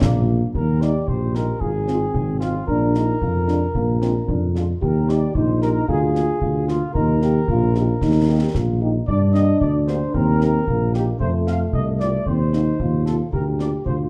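Awash in a roomy studio reverb with a dark overall sound, this festive, rousing cut from a military-style wind-band march in 2/4 sets a soft-edged trumpet section on the melody over a mellow, up-front tuba bass, a very quiet French horn section in accompaniment and close concert snare and bass drum with shadowy cymbals, while a punchy solo euphonium joins on a second line at 0.6 s and a tight trombone section sounds only a brief opening chord that ends at 0.5 s.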